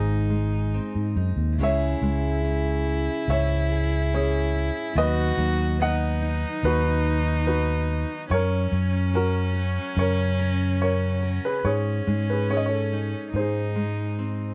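Heartbroken and intimate, this acoustic folk-pop ballad in C# minor moves at a slow 71 BPM in a straight 4/4, heard as a 14.5-second passage cut from a longer piece. A dark concert grand piano carries the melody, its mellow, short-sustained tone giving the line a smooth, vintage cast. Beneath it, a single cello plays a second line with a soft attack, light vibrato and an airy sul tasto bow, sounding close and intimate. A fingerpicked steel-string acoustic guitar fills in the accompaniment with a full-bodied, auditorium-sized resonance, while a fingered electric bass sits up front, round, punchy and amped. The harmony opens on G#, settles into C#m, then passes through B/D# and F# before reaching G#sus4 at 11.6 seconds and resolving back to G# at 13.3 seconds, all captured with close, detailed microphones and little reverb.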